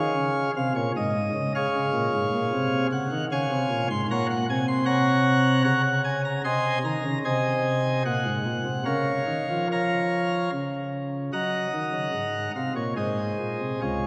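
Classical chorale-style music for solo chamber organ, serene and majestic, moving in a flexible, rubato three-beat pulse through a short passage cut from a longer piece. The principal chorus sounds full and up front, with a chamber voicing and a touch of chiff on the pipe attacks, spanning from deep bass to bright treble as the harmony settles through a series of inverted chords toward a dominant close, a rich Ab13 giving way to a plain Ab near 13.0 seconds. A long, wet church reverb surrounds the instrument, giving the 14-second passage a spacious, resonant hall sound.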